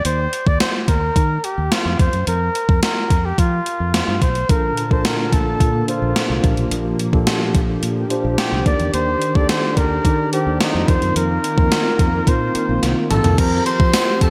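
1980s-style pop with a glossy, nostalgic mood, cut from a longer piece: a vibrato-tinged solo flugelhorn carries the melody through digital delay, up front beside an overdriven, electronic drum machine with thumpy kick, gated-reverb snare, hi-hat, toms, crash and tambourine, while a round, punchy fingered electric bass enters at 0.1 seconds. At 4.5 seconds a mellow tine electric piano arrives with a thick, chorused sawtooth unison pad set in the background, moving through chords such as Bbmaj7, Ebmaj7 and F7sus4 before a drum fill leads to Fsus2. Bright digital production and a lush hall reverb surround the band, and at 13.1 seconds a very quiet, shimmering FM bell with phaser appears, joined briefly by a jingly tambourine.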